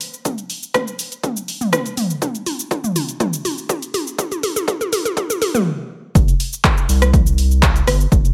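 A straight 4/4 pulse at 122 BPM drives this afro house cut, taken from a longer piece, with a driving, warm mood. An overdriven deep house drum kit of cabasa, handclaps, hi-hat, rim click and toms sits up front from the start, building through a drum fill until a brief stop at 5.7 seconds. Alongside it, a punchy, layered electronic kick, also overdriven and high-pass filtered, arrives at 0.3 seconds and keeps the groove firmly forward. At the drop at 6.2 seconds, a round analog bass enters low in the register, dark and sustained with a fast attack, its wave-folded tone pumping against the sidechain. Light reverb gives the produced mix a touch of space.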